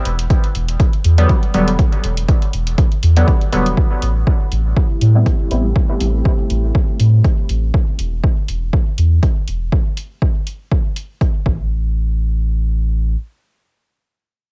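A dry, close-sounding cut from a longer dub techno piece in A minor, meditative and hypnotic at 121 BPM with a light swing on the sixteenths, moves from Em7 to Am7 before the harmony falls away. A round, soft sub bass pumps under an up-front, punchy kick and a quieter hi-hat, both overdriven and carrying the sound of a large room, while a juicy, resonant, wave-folded polysynth plays chorused, phased stabs with dub echo and gets a filter sweep as the Am7 arrives. A moody, warbling vintage pad with a slow attack and its own reverb holds sustained chords from 4.5 to 7.7 s, and the sub bass, with its own filter sweep, outlasts the drums to 13.2 s.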